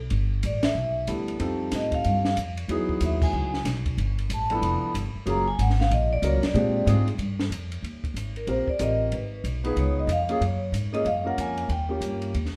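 A brisk swing at 186 BPM in 4/4 drives this playful, warm slice of small-group swing and bop jazz, cut from a longer piece and punctuated by a pair of band accents early on. The compact cocktail drum kit sits low in the mix, its dark, smooth sound with a rolled-off top, a high-tuned snare and a punchy kick carrying the groove across ride, hi-hat and crash, while the pizzicato upright bass, woody and up front on steel strings, anchors the low end. The vibraphone, played with medium hard mallets, takes the melody from 0.5 seconds with a metallic, ringing tone, a medium motor vibrato and a vintage, band-limited character, all bathed in plate reverb. A warm concert grand piano supplies the accompaniment with deep bass and an up-front presence. The harmony moves through rich colors such as Emaj7, G13 and Gbmaj9 before a second section at 7.8 seconds turns toward Eb6, Abm and Db7, settling on Eb7. 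The whole group is heard from further back in a modest club room with a moderate reverb tail.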